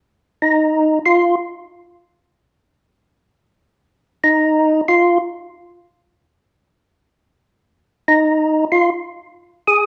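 A fat, lightly overdriven tonewheel organ takes the solo up front, its third-harmonic percussion and vibrato turning through a slow rotary speaker as it sits between Eb4 and Ab4. In this swinging, bluesy jazz fragment cut from a longer piece, the organ speaks in short phrases that arrive at 0.4, 4.2 and 8.1 seconds. The band plays live in one large studio room, with moderate reverb lending the sound a roomy glow.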